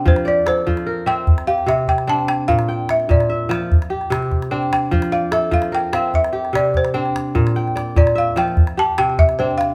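Joyful and warm, this brief passage from a longer West African traditional piece rolls along in a straight 12/8, with a woody, round balafon carrying the melody as a solo throughout, struck with soft rubber mallets. Beneath it, an up-front, fingerpicked kora spins ringing, crisp arpeggios, while a small, closely captured calabash keeps the pulse from 0.1 seconds. Played live together in one room, the ensemble circles through F, C and B-flat, with a moderate studio reverb around it.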